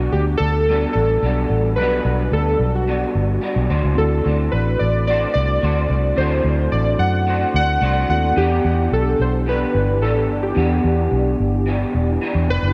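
A straight 4/4 pulse at 109 BPM carries this wistful, lonely indie pop excerpt, where a round, foam-muted vintage electric bass sits up front beneath a slightly broken-up, picked electric guitar through a small old amp with ensemble chorus and wavering pitch drift, while detuned, nostalgic lo-fi synth keys lead the melody with analog chorus and delay, a mellow tine electric piano enters in the background at 3.9 s, and the chords move from Gmaj7 to D7 to Em7 in a dreamy mix soaked in lush hall reverb.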